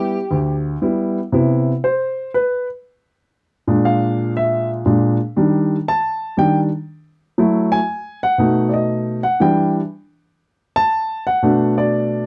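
Jazz swung at 119 BPM, energetic and joyful, opens with a mellow, tight saxophone section with light vibrato sounding a single G4 for the first 0.8 seconds before the warm, up-front baby grand piano, which accompanies throughout, takes a natural, short-sustained solo from 1.3 seconds over chords moving from Cmaj7 through Ebmaj7#11 and F#m9 to Bm7, all in a dry, close 1970s-style studio sound with a modest booth ambience.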